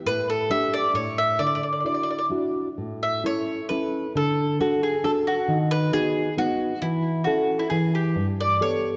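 Italian folk serenade in A major, sunny and lively at 134 BPM in a rubato 3/4, cut from a longer piece, with an up-front woody mandolin carrying the picked double-string melody over a dark, full-bodied fingerpicked nylon-string guitar, a bowl-back mandolin adding a quieter second line from 4.6 to 8.3 seconds, and the whole mix bathed in a wet scoring-stage reverb and the warbling pitch drift of worn old cassette tape.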